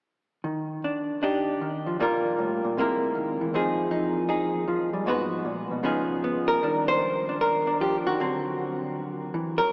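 Swung eighths at 156 BPM in 4/4 drift with a rubato looseness, giving this fragment of a solo jazz performance a relaxed, swinging feel. A lone clean, dark, fingered hollow-body electric guitar sits up front with a compressed edge from 0.4 to 9.7 seconds, moving through chords such as Ebmaj7, Gm9, C7alt, Abm7 and Db9 before settling on Ebmaj7 and D7 in its closing passage from 6.6 seconds. The sound is bathed in a cavernous cathedral reverb that lingers for seconds, yet filtered through a thin AM radio tone.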